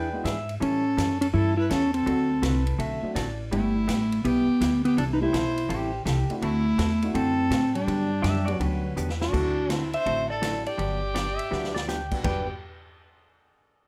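Swinging and playful, this western swing excerpt in G major moves at a brisk 165 BPM with a 64% swing on the eighth notes. A dark, clean lap steel guitar carries the melody with slide and volume swells, sitting out front in a plate reverb. Behind it, a clear, nasal fiddle with light vibrato and a pedal steel guitar played with fingerpicks add second lines, the pedal steel dropping out between 3.4 and 5.7 seconds. A picked hollow-body jazz guitar and a boxy upright piano in the background fill in the accompaniment over a chain of seventh, sixth and ninth chords. The woody, thumpy pizzicato upright bass is up front, while a vintage kit with a punchy kick and medium-tuned snare drives the groove and adds fills at 9.0 and 11.5 seconds, all in a moderate studio room.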